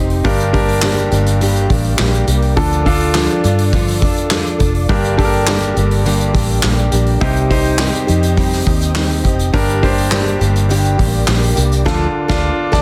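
This short cut from a longer piece has a dense, heavily limited modern sound, with light reverb and a small-room ambience. It is driving, dramatic piano-driven pop in a straight four. A clear, polished baby grand carries the accompaniment while a fingerpicked, plugged-in steel-string acoustic guitar plays a warm riff alongside it. Beneath them, a vintage foam-muted electric bass sits dark, round and punchy, the loudest part of the mix. A distant, roomy drum kit played with soft mallets enters at 0.1 s, with a punchy kick, medium-tuned snare, hi-hat, handclaps and crash cymbal, while a very quiet ethereal pad holds mellow, detuned sustained chords with a slow attack and long release in the background. The whole band hits an accent from 11.9 s to the end at 12.8 s.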